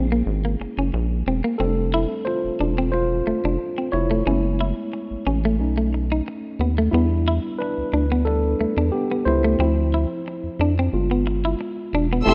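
Lightly reverberant and rough, like a home demo, this smooth, soulful R&B cut from a longer piece moves at 90 BPM in 4/4 with a gentle swing on the sixteenths. A worn, slightly out-of-tune tine electric piano, lightly overdriven and heard as if through built-in speakers, carries the accompaniment and takes a solo across the whole stretch from 0.0 to 12.3 seconds. Beneath it, a rubbery, hollow square-wave bass with a dark, bouncy filter pluck sits up front. A clean, picked electric guitar adds a second line in the middle register. The harmony drifts through extended chords such as F#9, F#m11, Em7 and Dm9 before landing on a tense G7b9. At 12.3 seconds a lush, bowed string section with vibrato appears, holding high sustained chords.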